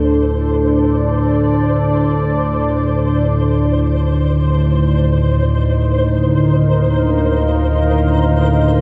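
In free time, this excerpt of unsettling, desolate dark ambient drone rests on a detuned analog drone, sawtooth and pulse-wave with pulse-width modulation, sitting low and up front under a lush chorus. Above it, a deep, moody pad of unison sawtooths with a sine sub octave holds slow-attack chords through chorus and shimmer reverb, shifting from D5 to Eb5 at 3.3 seconds, while a faint, flickering granular texture built on a triangle wave glints quietly around C5. A wet plate reverb and cassette-tape grain wrap the whole sound across its 8.8 seconds.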